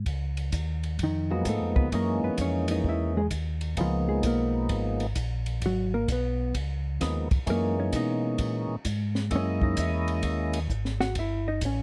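A dark, fingered hollow-body jazz guitar stands out in this swinging, soulful soul jazz organ trio excerpt, entering at 1.0 s with a clean, compressed electric tone. A percussive tonewheel organ joins at 1.3 s with a full melody marked by key click and second harmonic percussion through a slow rotary speaker, while a mellow, round tonewheel organ carries the bass from the start with chorus vibrato and its own slow rotary. A compact, dry acoustic cocktail drum kit with punchy kick, high-tuned snare, hi-hat and dark ride cymbal sits up front in a close, detailed sound with little reverb, over harmony moving mainly between Db13 and Gb13.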